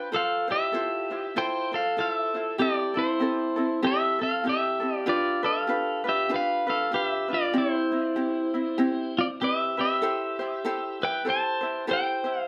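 An electric pedal steel guitar and an acoustic ukulele begin together at the very start of this dreamy, languid Hawaiian piece, cut from a longer recording. The steel carries the melody up front, its bright, twangy, clean tone played with fingerpicks and slide, compressed, colored by volume swells and a tape echo. Beneath it, the ukulele is fingerpicked lightly with a warm touch, supplying accompaniment at a lower level. The tempo is an unhurried 97 BPM in 4/4, with a gentle swing on the eighth notes in C major, and the harmony moves through Fmaj7, Am7, G7 and Cmaj7 before a new section arrives at 10.0 seconds on Am7. Both instruments sit in a moderate small-room ambience and play through to the cut at 12.5 seconds.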